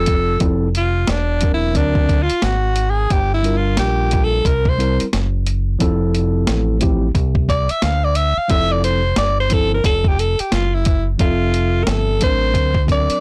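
A mellow tine electric piano and a deep, round fingered electric bass open this smooth, relaxed jazz-hop excerpt, with a boom bap sampler-style drum kit joining at 0.1 seconds. The tempo sits at 89 BPM in 4/4 with a swung 16th-note feel, in F major, moving through Fmaj7, Daug7, Gm7 and C7 before returning to Fmaj7. The drums sound compressed, gritty and pitched down, pairing a thumpy kick with a high-tuned snare and hi-hat, while the dark bass carries transformer saturation and sits up front. A bright alto saxophone enters at 0.8 seconds and takes a jazz-style solo with light vibrato and scooped notes, sitting present over the clean electric piano, which comes through its built-in speakers. The dry, blown-out recording has an overdriven character, and a brief closing section begins at 11.2 seconds as the piece is cut off.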